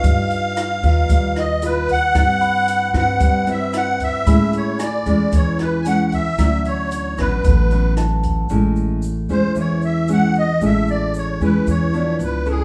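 A reedy, shimmering musette accordion sits up front in a moderate studio room, carrying the melody of this breezy, relaxed bossa nova excerpt in A major at 113 BPM, beside a fingerpicked nylon-string guitar and a woody, dark pizzicato upright bass. A compact cocktail kit with a punchy kick, hi-hat and rim click plays alongside a grainy egg shaker and a bell-like tine electric piano in the background, moving through chords such as Gaug7, Cmaj7/G and Dmaj9. The drums stop at 8.4 seconds and the electric piano at 8.7 seconds, as the accordion takes a solo from 8.5 seconds over guitar, bass and shaker.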